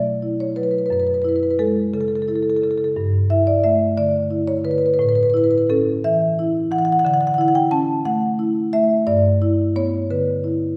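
Flowing and hypnotic, this short passage of contemporary classical music for solo marimba moves at a rubato 59 BPM in dotted quarters, in 6/8. The marimba, played with medium mallets on rosewood bars, sounds woody and warm and sits up front, spanning from F#2 up to A5. Its harmonies drift through open, suspended and extended colours: Bsus4 and F#m9, then Gsus2 at 3.0 seconds, Aadd9, Dmaj9, and G6 near 9.1 seconds. The instrument is tuned slightly low, to A4 = 439 Hz. A recital hall's reverb, with a 1.3-second decay, surrounds the marimba with a lingering, spacious glow, as if captured in a church or concert hall.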